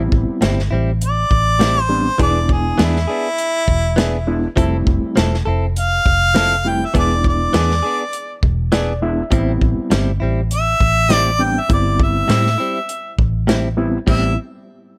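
The recording has a light reverb, with the harmonica and bass sitting up front and the drums heard at a roomy distance. This brooding, soulful passage of straight-eighth soul blues, lifted from a longer piece, moves through Am7, E7 and Fmaj7 before returning to Am7. A gritty, overdriven reed electric piano with harmonic tremolo and plate reverb carries the accompaniment, adding a short fill at 8.4 seconds. A bright, twangy clean electric guitar, recorded direct and compressed, plays picked stabs, while a dark, round, foam-muted fingered bass anchors the low end and an acoustic kit with dark cymbals, a medium-tuned snare and a tight kick keeps time. From 1.0 seconds a warm harmonica takes the solo melody with light vibrato, a soft attack and scooped, jazz-style notes, wrapped in plate reverb.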